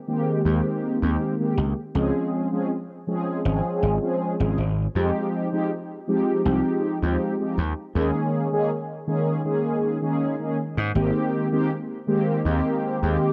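A mellow synth brass carries this hazy, melancholic vaporwave fragment from 0.1 s, its round, detuned sawtooth tone made murky by phaser, analog chorus, analog delay and the grit of a vintage 12-bit sampler. A gritty slap bass enters at 0.5 s, bright, punchy and overdriven, sitting up front beneath lush chords that drift from Abmaj9 through Dbmaj7, Fm9 and Eb7sus4 before returning home. A lush hall reverb and a dark, warm production wrap the short passage in a soft haze.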